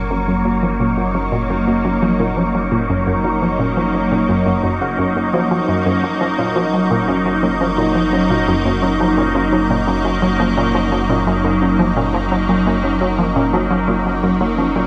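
Expansive and cosmic, this sequencer-driven ambient space music at 86 BPM in F# major sets a bright, morphing wavetable pad up front with phaser and ensemble chorus over a dark, detuned pluck's background arpeggios with delay, a gritty 12-bit analog pluck riff, a deep round analog bass holding F#1, and a breathy wind-like noise texture, all resting on a single F# chord throughout this 14.9-second dreamy, reverb-soaked mix.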